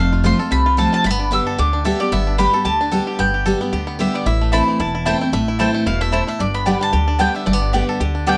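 A high, double-strung mandolin carries the melody alongside a bright, twangy, fingerpicked banjo set lower in the mix, while a picked steel-string guitar with an auditorium tone and a thumpy, gut-strung upright bass sit up front, and a mellow, round second mandolin adds stabs from 4.5 s, giving this short, swung bluegrass cut over F, G and Am a haunting yet driving feel in a modest small-room reverb.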